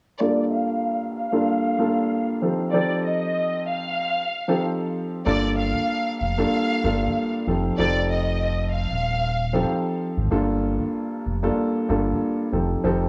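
A lush, bowed violin section carries the melody up front with expressive vibrato and soft attacks, its tape echo lending a haunting edge before it drops out at 9.6 seconds. Beneath it, a dark, woody upright piano lays down mellow chords over a Gm7 to F7 progression, and a deep, round sub bass enters at 5.3 seconds. This dark, reflective boom-bap hip-hop excerpt has a swung groove and a gritty, dry sound in a small room, with a filter sweep opening the first section.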